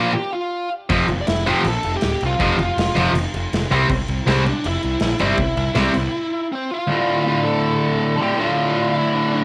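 A straight 4/4 punk rock pulse drives this aggressive, raw fragment. A bright overdriven rhythm guitar and a tight distorted guitar pound out picked riffs from the first moment, while a dark, bluesy lead guitar carries the melody through distortion and tape echo. A fuzz-laden electric bass and a big drum kit with punchy kick, crash and medium-tuned snare, with a cassette-tape grit on the drums, join at 0.9 seconds and drop out for a short break at 6.1 seconds, after which the two remaining guitars push on alone through the small-room, home-taped sound.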